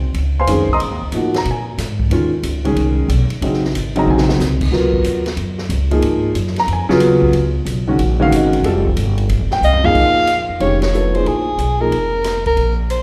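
This is an intense, searching modal jazz excerpt with a brisk swing feel, opening on a woody, thumpy pizzicato upright bass that sits up front in the low register. A big-band drum kit joins at once with ride cymbal, hi-hat, rim clicks, a medium-tuned snare and a boomy kick, kept lower in the balance and rounded out by crash cymbal and toms. A concert grand piano enters at 0.4 seconds with intimate, natural voicings and a deep low end, with its action noise audible as it moves through suspended thirteenth harmonies before shifting to a dominant chord. Drum fills arrive around 4 seconds and again leading into the second section at 10 seconds, and at 9.6 seconds a soprano saxophone takes the solo up front, smooth on top with vibrato in a jazz style. The band hits an accent at 10.8 seconds, and the piano drops out shortly before the close. The whole group is bathed in the wet reverb of a church or concert hall.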